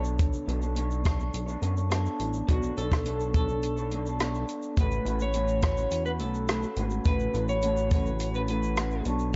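From the first beat, a dry cocktail drum kit with a tight kick, hi-hat, rim click and shaker sits up front beside a glossy, retro chorused synth bass, while a dark, slightly broken-up electric guitar through a small old amp wavers in lush chorus and warbly pitch drift beneath a clean lap steel melody played with fingerpicks, slide and volume swells, this hazy, nostalgic indie and bedroom pop fragment shifting from Bm9 to A69 at 4.8 seconds inside a small, muted room before it is cut off.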